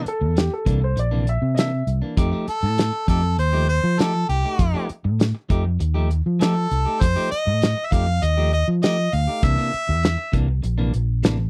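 Straight-eighth soul blues with a swaggering, laid-back mood, cut from a longer piece. A clear harmonica carries the solo melody up front, treated with overdrive and slapback echo, and drops out at 10.3 seconds. Beneath it, a round, punchy fingered electric bass and an acoustic soul drum kit sit prominently in the mix, the kit giving a tight kick, medium-tuned snare and hi-hat with a rolled-off top. A clean, picked electric guitar adds stabs throughout, while a woody upright piano with long sustain plays a brief second line only until 1.9 seconds. The harmony moves from C9 to F9 and back to C9, and the dry, close sound recalls a 1970s studio with little reverb.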